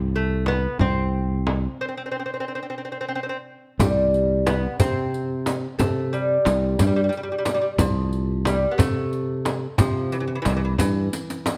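Lightly reverberant, this passionate, festive Persian modal piece in C dastgah mahur moves in a straight 6/8 at 60 BPM, cut from a longer performance. A bright, growly fretless electric bass and a delicate, fingerpicked gut-string lute with double courses sit up front, while a deep, vintage-toned tombak played with soft hands and a small, dry frame drum struck hard stay in the background. After a stop at 1.8 s, a riq with bright jingles joins at 3.8 s, and a drum fill closes the passage at 11.1 s.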